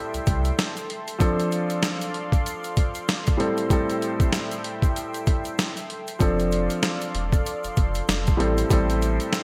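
Bright 1980s-style digital production with lush hall reverb frames this gritty, tough boom-bap hip-hop excerpt in A minor at 96 BPM with a swung 16th feel, where a pitched-down, thumpy sampler-style drum kit sits up front beside a dark, worn grand piano with audible action noise and cassette tape coloring, a smooth, detuned analog pad holds sustained chords over Am7 and F6, a very quiet grainy egg shaker adds texture, and a deep, saturated sub bass sounds briefly at the start before returning at 6.2 seconds.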